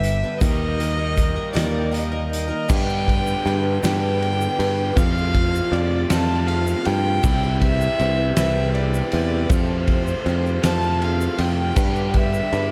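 A dark, woody fiddle with light vibrato and slapback echo carries the melody over a growly, up-front picked electric bass, a loose drum kit with a fat snare and punchy kick, a shimmering octave-doubled twelve-string acoustic guitar, a double-tracked overdriven electric guitar riff, a very quiet flute-like tonewheel organ on slow rotary speaker and a grainy egg shaker, all in this slow 6/8 folk rock and heartland rock excerpt in G mixolydian at 53 BPM, moving from Eb to G, Fadd9 and Cmaj7 with a big arena sound and an open-road mood.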